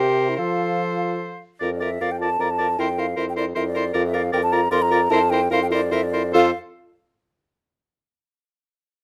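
Graceful and lively, this brief excerpt from a quick classical-period movement for wind quintet moves in 3/4 at roughly 138-157 BPM in F major, with a rubato feel and a slowing down between 3.4 and 6.3 seconds. A pure, hollow concert flute carries the melody with vibrato and a soft attack, its highs lifted, ranging from D5 to C6. Beneath it, a bright oboe with light vibrato supplies a second line, while a clarinet of similar brilliance and a French horn with a soft attack and close-miked glow fill in the accompaniment. A mellow bassoon sits up front on the bass, spanning F2 to G4 with light vibrato. After an opening C7 resolves to F, the harmony alternates between Bb and C7 over an F pedal before settling on F, and the close, detailed microphones capture the ensemble in light reverb.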